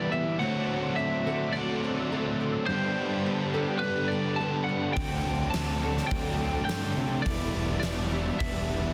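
Shoegaze-tinged dream pop rock at 105 BPM in D mixolydian, hazy and dreamy, where a twangy, slightly broken-up lead guitar with slapback echo carries the melody over a thick bed of riffing guitars: a crunchy, up-front overdriven part with lush chorus, a bright, double-tracked distorted part in the background and a very quiet raw garage guitar, all moving through D7, Gadd9, D7sus4 and Em7. A shimmering, octave-doubled twelve-string acoustic adds fingerpicked arpeggios with audible finger squeak and ensemble chorus, while a silky, very quiet analog string pad holds sustained chords above. At 5.0 seconds a growly fuzz bass and a huge arena drum kit with a fat snare and punchy kick join, with a jingly tambourine faintly following at 5.5 seconds, all under light reverb and a dense, heavily limited master in this short cut from a longer piece.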